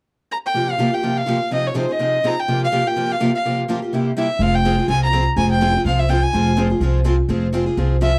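Dry and close, with only a small room's reverb, this has the intimate feel of a 1970s studio session. It is a short, virtuosic and bittersweet passage of acoustic string swing in the jazz manouche style, cut from a longer piece. A single bowed violin carries the melody up front, with an earthy, biting edge, a smooth top and light vibrato. Two picked steel-string parlour guitars accompany it, both bright and boxy; one has the sheen of fresh strings and the other lets a finger squeak slip through. At 4.4 s a pizzicato upright bass on gut strings joins up front, woody, dark and thumpy, as the harmony settles from suspended dominant colours onto a minor chord and the music moves into a new section.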